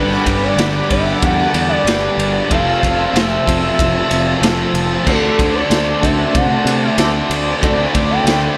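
A hazy, wistful shoegaze and dream pop passage opens with a smooth, gliding sawtooth lead carrying the melody through chorus and slapback echo, above a brassy, detuned analog pad with chorus and tremolo and a round, dark fingered electric bass. Three guitars stack riffs in the background: a bright, double-tracked distorted electric, a hollow-body overdriven semi-hollow washed in reverse reverb, and a thick fuzz guitar with lush chorus. At 0.3 seconds a raw garage drum kit joins up front, gritty and saturated, with a punchy kick, dark cymbals and a pumping small-room sound, all moving through Gmaj7, Fmaj7 and D7 in this short cut from a longer piece.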